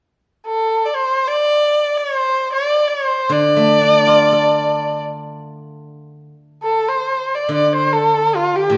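Tender and wistful, this brief fragment of Chinese traditional chamber music unfolds in free time in the D yu mode, with a single bowed erhu singing a smooth, vibrato-laden melody full of portamento from 0.5 seconds. A fingerpicked steel-string zither enters at 3.3 seconds with ringing, silvery accompaniment, and both sit up front in a moderate recital hall reverb as the music shifts into a new section at 7.5 seconds.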